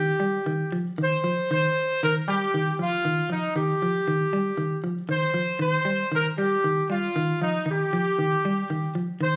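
Funky and defiant, this afrobeat excerpt moves at 117 BPM in a straight 4/4, resting on a single Ebadd9 chord for its full 9.4 seconds. A brilliant horn section carries the melody up front, punchy and tight in a pop style, ranging from Eb4 to C5. Beneath it, a semi-hollow electric guitar plays clean, fingered arpeggios between Eb3 and G3, its dark hollow-body tone sitting just as close to the listener. Both parts play together from the first moment to the last, the horns a little louder than the guitar. The band sounds as though it is playing live in one large studio, with a wet reverb lingering for about 1.2 seconds around the playing.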